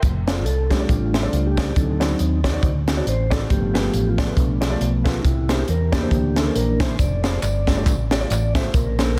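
Reverent and soulful, this short uptempo gospel excerpt swings easily in four, with a mellow tonewheel organ carrying a soft, flute-like solo through sustained chords from the opening moment, its slow rotary speaker giving the tone a gentle shimmer. Beneath it, a hollow-body short-scale electric bass, played fingerstyle, sits up front with a dark, round, amped sound. A crisp fusion drum kit is just as forward, its high-tuned snare and tight kick saturated and gritty, with a pumping small-room character on hi-hat, kick and snare. A grand piano joins at 0.3 seconds with a natural tone and short sustain, adding quiet accompaniment. The harmony moves from F6 through D7b9, G9 and C9, and at 7.0 seconds, as it settles on F69, tambourine, egg shaker and group handclaps come in low in the mix. Light reverb and small-room ambience surround the parts, and the master is dense and heavily limited in a modern style.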